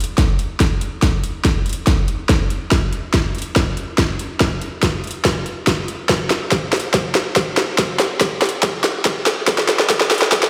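A half-time 4/4 pulse at 142 BPM drives this bright, euphoric future bass fragment, cut from a longer piece, which is one long build-up with a drum fill and filter sweep running its full 10.5 seconds. Up front, a trap drum kit delivers a sharp snare and metallic hi-hats, while a layered, punchy electronic kick enters at 0.2 seconds, both parts carrying a tape-warm, produced sheen. The sound is bathed in a lush hall reverb and has the high-passed, stony ring of a big sound system played in a bare room.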